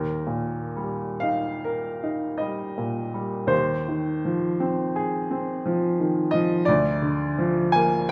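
A bright, woody upright piano sits up front in this dreamy, serene romantic nocturne for solo piano, unfolding in a gently rubato 9/8 at a slow 40-60 BPM in Eb major, moving from Eb through Fm7/Eb to Bb/D across 8.1 seconds cut from a longer piece and framed by the moderate reverb of a recital hall.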